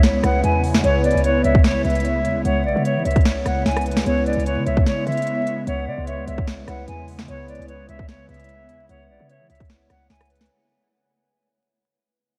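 Brooding and hard-hitting, this half-time trap excerpt pairs an airy, reedy flute melody up front with hard-clipped kicks, sharp snares, crisp hats and rim clicks, a punchy, tight 808-style bass, warbly lo-fi synth keys, a glassy FM pad and a hollow, woody clarinet-like synth lead in the background, all set in a dreamy mix soaked in huge reverb and vinyl crackle over a C#m7 chord as it fades out across its 10.5 seconds.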